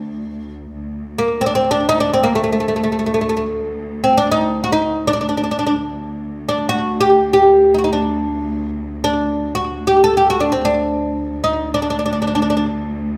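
In free time, this longing, melancholic excerpt of an Arabic maqam ensemble sets an up-front, woody, fretless oud melody with a slapback echo over a lush, bowed cello-section drone with vibrato, both sounding from the start in a moderate recital-hall reverb until the oud stops at 12.6 seconds and the cellos hold on to 13.2 seconds.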